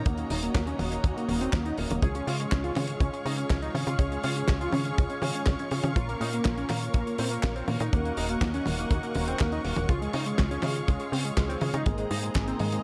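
Heard in a small room, this sunny, romantic 122 BPM Italo disco passage in Db major sets a thick, detuned unison lead melody with analog chorus and tape echo over a punchy sawtooth sequencer bass, a dry kick drum placed up front, a damped 70s kit of handclaps, hi-hat, fat snare and toms bathed in gated reverb, dark chorused synth brass stabs in the background, and lush bowed studio strings holding sustained chords through Ebm7, Db, Bbm and Abadd9.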